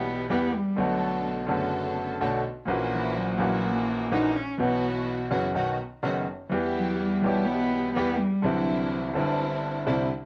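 Close, detailed microphones and a light reverb give this short excerpt from a longer tango an intimate, present sound. In E minor at 126 BPM in 4/4, the rubato pulse feels passionate and nostalgic. A bowed cello, played by one player with nasal, boxy vibrato, carries a smooth, even solo line from the start and falls silent at 8.9 seconds. Beneath it, a bright, brilliant concert grand piano sits up front, laying down the accompaniment with a deep bass that reaches down to F#1. A dark, woody studio string section, bowed and lush, adds distant stabs through the full 10.1 seconds. The harmony moves from Em through Bm7 and F#7/A#, rests on Bsus4 resolving to B, returns to Em and closes on Cadd9 at 8.4 seconds.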